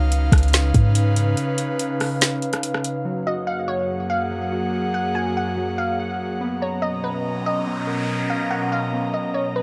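Atmospheric cloud-rap in F# major at 143 BPM with a half-time feel, this floating, dreamy excerpt drifts over a breathy, detuned pad that sustains soft chords with chorus and sidechain pumping for the full 9.6 seconds. At the start a deep, boomy 808-style sine bass sits up front with a smooth electronic drum kit of soft kick, woody snare, rim click and metallic hats, but the bass stops at 1.4 seconds and the drums by 2.9, opening a break over a C#7 chord. From 3.0 seconds warbling, nostalgic lo-fi synth keys spin mellow arpeggios through chorus, delay and a low-pass filter, as the harmony moves to F# at 3.1 seconds and then Bmaj7. A crystalline wavetable pluck carries the melody from 3.3 seconds with the same chorus, filter and delay treatment, its fast attack decaying into the haze. An electronic noise sweep enters faintly at 6.9 seconds, all set in a moderate booth ambience.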